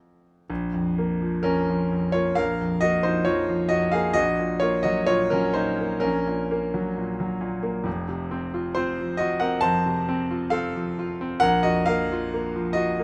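This is a classical romantic nocturne for solo piano, cut from a longer piece, in Bb minor at a slow 66 BPM in 4/4. The feel is rubato, with uneven beats that stretch and give the line a mournful, melancholic cast. A clear concert grand piano sits up front and plays alone from start to finish across the 13 seconds, spanning F1 to A5 with a deep bass and a smooth, vintage character. The harmony moves from Bbm at 0.5 seconds through Ebm7/Bb and F to a bare Bb5 at 11.4 seconds. Light reverb lends the instrument a modest sense of space.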